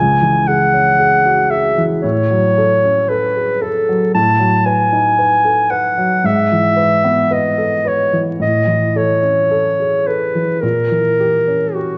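A wet recital hall reverb and a vinyl crackle surround this short cut from a longer romantic classical duo in E major, taken at a slow, rubato 52-58 BPM in 4/4. Up front, a mellow clarinet with a smooth top sings a lyrical solo melody from F#4 to A5, while a warm grand piano with short sustain accompanies from the low C#2 to B4. Together they move through C#m, F#m/A, B7/A, E/G# and A before reaching an A#dim7 at 10.6 seconds.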